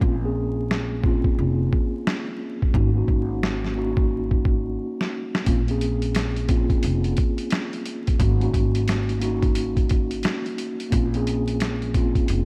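Vinyl crackle and a light digital ambience frame this moody, reflective boom-bap hip-hop excerpt in Bb minor, moving at 88 BPM with a swung 16th-note feel. A gritty, pitched-down sampler-style drum kit with a thumpy kick and tape-warmed snare and hi-hat sits up front beside a mellow tine electric piano heard through its built-in speakers and coloured by cassette tape. A woody, growly pizzicato upright bass anchors the alternating Bbmadd9 and Ab7sus4 chords, and a drum fill at 4.8 seconds closes the opening break.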